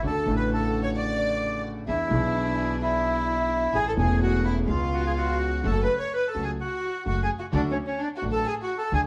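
Vinyl crackle sits over a wet studio room where the band plays live together on this short, tense and melancholic tango fragment, its time pushed and pulled with rubato. The reedy bandoneon carries the melody up front, joined by a violin section singing a second line with vibrato and portamento, while a dark, mellow grand piano with audible action noise lays down the accompaniment. A woody, growly pizzicato upright bass anchors the low end, and a rich, floating string section adds soft-attack stabs with tape echo in the background throughout, as a new section begins at 5.6 s.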